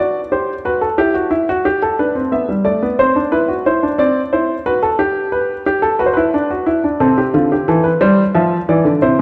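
A dark, warm production sets an intimate baby grand piano up front in a moderate concert hall reverb, where its natural tone, short sustain and audible action noise come through clearly. This elegant, lively baroque-style three-part fugue in C major moves in 12/8 at 60 BPM counted in dotted quarters, with the solo piano ranging from C3 to E5. Cut from a longer piece, the passage runs through G, E minor, C and G again before arriving on C at 7.0 seconds.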